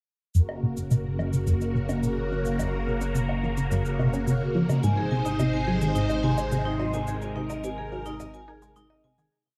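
At 0.3 s a cosmic, expansive piece of ambient, sequencer-driven space music begins in Gb lydian at 107 BPM in a straight 4/4, with every part except one sounding together. A juicy, squelchy blip pluck drives it with an 8-step sequenced riff, detuned and ring-modulated under a phaser and tape echo, while its synth arpeggio carries a filter sweep throughout. Up front, a vintage string machine holds swirling sustained chords coloured by ensemble chorus and phaser, over a fat, thick analog bass sustaining the root. A light, overdriven machine pulse of shaker and low woodblock, re-recorded in a small room and echoed on tape, ticks along beneath. When the harmony shifts from Gb to Ab at 4.8 s, a close-miked, metallic vibraphone with its motor off enters with a ringing 5-step arpeggio that drifts against the bar. A moderate plate reverb and a cassette tape character frame the short whole piece, which fades out from 6.3 s.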